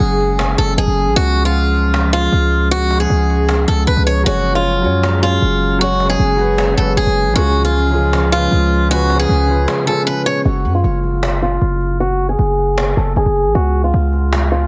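A half-time 4/4 trap beat at 155 BPM sets a menacing, brooding hip hop mood in this excerpt, with a punchy, up-front 808-style bass and a distant, woody cajon under a bright, boxy, picked swing-style acoustic guitar melody, while a warbling, lo-fi tape-like pad holds detuned chords until 10.4 s and a dark grand piano adds mellow accompaniment from 4.2 s, heard in a small room through a heavily compressed radio sound, as a break at 9.7 s gives way to a filter sweep over F#sus2 and C# chords.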